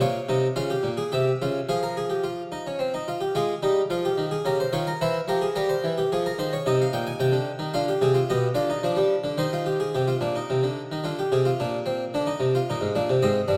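A solo Flemish-style harpsichord sits up front, close-miked, its plucked tone brilliant and full, with octave strings in its sound. This baroque-style three-part fugue in F minor moves at 109 BPM in a straight 3/4, tuned to A4 = 438 Hz, and its mood is serious and contemplative. The single instrument covers a span from G2 to Ab5, carrying all three voices through harmonies that pass from a half-diminished opening over Bb to C and Fm, then on through Cm, Ddim and G/B. A contrasting passage begins at 3.4 s, and the opening material returns at 9.9 s on an open F5 before settling through Bbadd9 to Eb5. The harpsichord's own sound is dry and close, placed within a moderate scoring-stage reverb whose 1.6-second tail gives the room some depth. This fragment of a longer piece runs 13.6 seconds.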